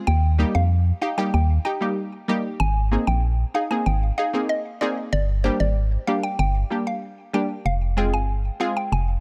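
Dry and close, with little reverb, this short cut from a longer dancehall track has a sultry, hypnotic pull over a straight four-beat feel. An organ-like FM bass sits up front, hollow and dark, each note striking quickly and then decaying. Above it, a detuned sawtooth analog pluck carries the accompaniment from 0.4 seconds, bright and round, with a noise layer, an evolving filter sweep and chorus. The melody comes from a mellow, woody mallet-like synth pluck treated with chorus, phaser and tape echo, sitting lower in the mix than the other two parts. The harmony moves from Eb to Abadd9, then turns at 5.1 seconds to Gm and Fm for the second half.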